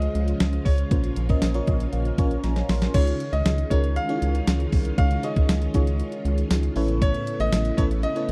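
A rubbery, up-front square bass and a thumpy, tape-warm 12-bit drum machine with fat snare, hi-hat, crash and tambourine drive this nostalgic, romantic 1980s-style pop excerpt in Db major at 118 BPM, over a dry, close 1970s-style studio sound. A natural-toned concert grand carries a high melody while a phaser-treated FM electric piano with tremolo plays accompaniment and shimmering, chorused string-machine violins hold sustained chords, moving from Db through Bbmadd9. The electric piano plays a fill from 1.4 seconds and the drums add their own fill into a new section at 2.9 seconds that opens on Dbadd9 and later shifts to Aadd9.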